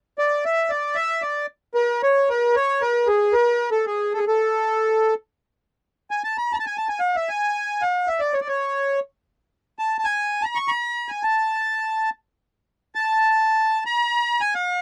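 Persian music in the A chahargah dastgah, this brief excerpt cut from a longer piece carries a stately yet passionate mood at 76 beats per minute in a straight 6/8. A solo accordion plays throughout, entering at 0.2 seconds and sounding until 14.8 seconds, ranging from G#4 up to C#6. Its tone is reedy and mid-forward, with a slow beating in the reeds that gives the sound a gently wavering quality. The instrument sits up front in a dry, close recording with a 1970s studio character, touched by only light reverb. The passage moves through two sections, with the second beginning at 5.7 seconds.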